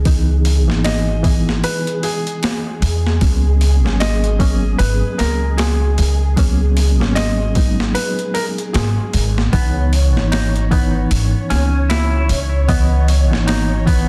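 A worn, reedy electric piano with overdrive, tremolo, tape echo and a filter sweep sounds from the start of this cinematic, hypnotic trip hop excerpt alongside sawtooth string-machine cellos with phaser and ensemble chorus in the background, a woody pizzicato upright bass up front and a gritty, pitched-down boom bap sampler-style kit with a thumpy kick and high-tuned snare, while a soft felt-muted upright piano with audible action noise carries the melody from 0.8 s to 9.3 s and a bright, twangy clean electric guitar enters with chorused, delayed arpeggios at 9.5 s, in a dry, dense, heavily limited master.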